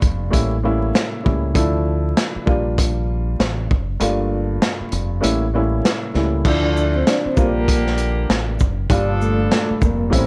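Vinyl crackle and light reverb frame this dark, reflective boom-bap hip-hop excerpt in D harmonic minor, moving at 98 BPM with a swung 16th-note feel. A woody, intimate upright piano with audible action noise and a cassette-tape tint plays chords over a round, punchy dub bass and a gritty, saturated breakbeat kit of kick, snare, hi-hat, shaker and crash; the kick is muted from 4.0 to 6.4 seconds. At 6.4 seconds a vintage jazz horn section adds stabs, and from 6.5 seconds a ringing soft-mallet vibraphone with fast motor vibrato carries the melody, both touched with tape echo.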